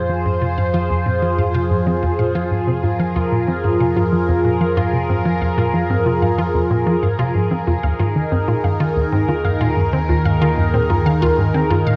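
A swirling, phased analog pad sits up front in an echo-heavy mix with a moderate plate reverb, holding sustained chords that move from F minor to Ebsus4 at 7.8 seconds in this hypnotic, expansive stretch of ambient, sequencer-driven space music at 93 BPM. Beneath it, a tight, punchy sequencer bass drives a dark, ring-modulated sawtooth riff through tape-flavoured delay with a filter sweep, while a mellow, pulse-width-modulated analog drone with chorus hums low in the background. A bright, detuned unison pluck traces delayed arpeggios behind them, fading in across the full 12 seconds.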